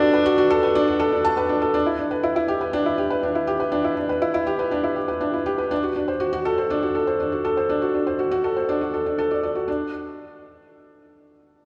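A reedy, gut-string viola in period style sounds a brief bowed D4 with tape echo during the opening drop, ending at 1.2 seconds, while a felt-muted upright piano, intimate and up front with audible action noise and short sustain, carries a tape-echoed riff between D4 and A5 over Bm7, Em7 and D7 until the chords give way at 9.7 seconds and the piano plays on to 11.7 seconds, all in a moving, melancholic 121 BPM electronica cut in straight 4/4, tuned to A4 = 443 Hz and set in a wet scoring stage reverb.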